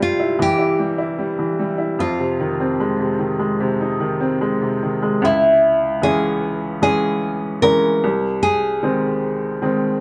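A straight 4/4 pulse at 75 BPM carries this short pop piece, cut from a longer work and tuned to A4 = 439 Hz. Its mood is hopeful and heartfelt. A fingerpicked nylon-string guitar sings the melody between Fb4 and Bb4, its fresh strings giving a full-bodied, deep classical tone with audible finger squeak. Alongside it, an upright piano plays the accompaniment from C2 to E5, brilliant and woody with long sustain. Both instruments sit up front in a moderate studio ambience that captures a band playing live in one room. The harmony moves from C/G to Fm7 at 2.0 seconds, then shifts to Dbm at 5.2 seconds as a new section begins, and settles on Ab/C at 8.0 seconds.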